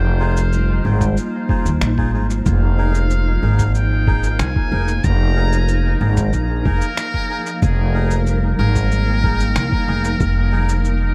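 A woody, dark upright bass sits up front with tube saturation, anchoring this hazy, deep ambient dub excerpt at 93 BPM in F minor on a single Fm7 chord. A buzzy, muted trumpet with metal mute carries the melody with vibrato, sampler grit and dub echo, while a vibraphone's ringing arpeggios, reedy melodica stabs entering at 0.2 seconds and a blurred, evolving granular cloud pad fill the space behind it. Muffled, tape-warm electronic cabasa and finger snaps arrive at 0.4 seconds with dub echo, and a thumpy electronic kick drum joins at 1.0 seconds in the background.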